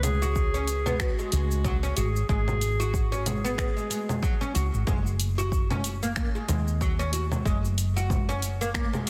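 A swung 93 BPM groove in 4/4 drives this earthy organic downtempo excerpt in G# minor pentatonic, where a deep, tape-touched electronic kick and a small-room deep house kit of cabasa, congas, finger snaps and hi-hat with a softly clipped snare sit under a dark, round fretless bass, while a plectrum-plucked double-strung oud with digital delay spins arpeggios from 0.2 seconds and a smooth, mellow clarinet with tape echo carries the melody only until 4.6 seconds, all within light reverb and a dense, heavily limited modern master.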